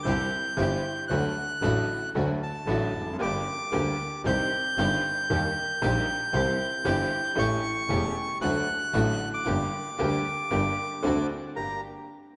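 A wet concert-hall reverb surrounds this passionate, sultry tango, and its top end is gently capped for a soft, rounded sheen. Played with a rubato feel around 115 BPM in 4/4 and set in G harmonic minor, the music is an excerpt cut from a longer piece. Up front, a reedy, dark bandoneon with a boxy small-room character carries the melody high in its register. Beside it, a brilliant, woody upright piano supplies short-sustained accompaniment. In the background, a lush symphonic string section enters at 0.1 seconds with expressive bowed stabs full of vibrato and portamento, while a single bowed double bass sounds earthy and distant with light vibrato. The harmony moves from C and D through Gm, Cm, Eb and A7 before D7 resolves home to Gm at 11.6 seconds.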